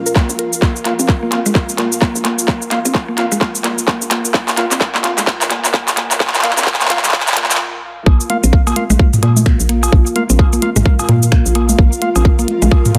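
Minimal techno with a quirky, clinical mood and swung sixteenths: a tight, up-front kick and an overdriven click kit of snaps, claps, clicky hats and shaker drive a hollow, bouncy FM bass, while a woody mallet-like pluck with dub echo and a cloudy granular pad pump against the kick and dark organ stabs sit in the background, all through a filter-swept build-up that halts briefly at 7.6 seconds before the drop at 8.1 seconds brings in tape-toned electronic cowbell, congas and toms.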